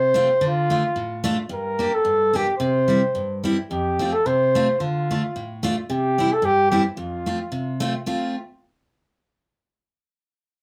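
Jolly and bouncy, this short alpine folk piece moves at 110 BPM in 2/4 with a light swing on the eighth notes and a touch of rubato, set in F major. A flugelhorn carries the melody in a classical style, its tone mellow and punchy yet slightly distant, with a roomy quality from the small, reverberant space around it. Beneath it, a picked steel-string acoustic guitar provides the accompaniment, sounding bright and full-bodied with the depth of a jumbo-sized instrument. Both parts sit up front and play together from the start, the horn stopping at 8.3 seconds and the guitar at 8.4 seconds. The harmony cycles through Dm, Gm, C and F before returning through Dm and C to settle on F, and a brief new section begins at 8.1 seconds as this cut from a longer piece comes to its close.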